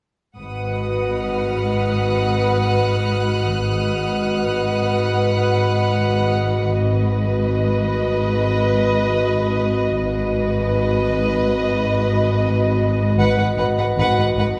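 A glassy, ethereal glass harmonica holds slow-blooming sustained chords over a single G#m7 harmony in this eerie, mysterious suspense-film cue, alongside a rich, up-front violin section on a smooth second line, an intense cello section and a warm double bass section on the bass, and a clear, high violin section texture that stops at 6.3 seconds, all heard from further back in a reverberant concert hall in this excerpt from a longer piece.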